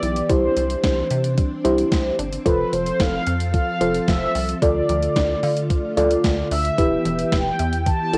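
This short excerpt, cut from a longer piece, has the dry, intimate sound of a home recording on cassette, with little reverb and a soft tape haze over several of its parts. It is bright, nostalgic synth-pop in C major at 111 BPM in a straight 4/4, moving through Cadd9, F, Dm and Em. An up-front 80s digital drum machine drives it with a thumpy kick, hi-hat and a gated-reverb snare, while a rubbery, hollow square-wave bass bounces underneath with a resonant filter pluck and a moving notch. A brassy, round synth brass carries the melody with chorus and tape echo, over sustained, organ-like ensemble strings with an ensemble chorus. A soft, full-bodied FM electric piano enters at 0.3 seconds with warbling chorus, and a very quiet, detuned unison pluck adds punchy sawtooth arpeggios in the background.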